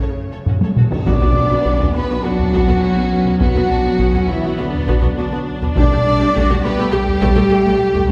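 Cinematic epic orchestral film score, dark and heroic, in which bowed violins carry a melody and a lush second line over background violas, expressive cellos and soft-attack double basses while mellow French horns and bright trombones hold sustained chords, up-front taiko drums enter at 0.5 s with a fill leading to a full accent at 1.1 s, where an airy, distant flute line, a very quiet tam-tam and close, dry timpani join, the timpani returning at 5.8 s, the orchestra set in a reverberant concert hall.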